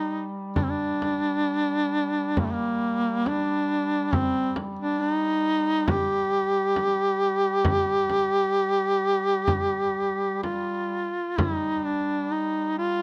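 Longing and mournful, this brief fragment of a Caucasian folk lament unfolds in a free, rubato feel. A clear, close-miked duduk carries the melody up front with vibrato and scooped notes, while a mellow second duduk holds a drone on G3 from a more distant, roomy position. A frame drum played with soft hands enters at 0.6 seconds and stops at 11.6 seconds, sounding dry and near, and the recording has light reverb and detailed microphones.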